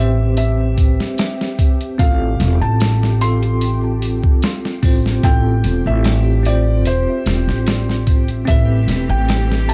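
A brooding, hypnotic trip hop fragment at 74 BPM opens on a soft, felt-muted upright piano melody with audible action noise, 12-bit grit and dub echo over a bell-like tine electric piano with tremolo and tape echo, a woody pizzicato upright bass and a faint reversed, swelling texture. A gritty, pitched-down boom bap kit with a thumpy kick enters at 0.4 seconds as the harmony moves from Am7 to F, and a smooth, distant bowed string section joins at 8.5 seconds as the harmony returns to Am7, all wrapped in a dark, small-room production with vinyl crackle.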